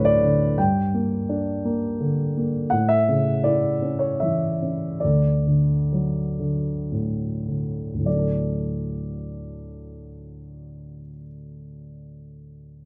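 Classical solo piano in a lyrical, peaceful vein, this short excerpt of a longer piece unfolds in a gentle, rubato 3/4 as a dark, mellow grand piano sits up front through close, detailed microphones and light reverb, easing from D through G minor and A back to D while slowing down between 2.7 and 8.1 seconds before a brief calm second section.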